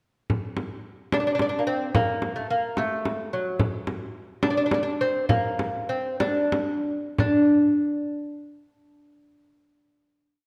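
In a straight 6/8 pulse of 58-73 BPM counted in dotted quarters, this short, festive Persian modal piece in D dastgah homayun (tuned to A4 = 439 Hz) sets a small, bright frame drum, close and up front with hard hands in a low and high stroke pattern, beneath a delicate, fingerpicked acoustic lute with doubled nylon strings, some in octaves, that enters at 1.1 s with an ornamented modal melody. The tempo slows from 3.6 s, and the lute holds a final note to 10.5 s within a wet scoring-stage reverb.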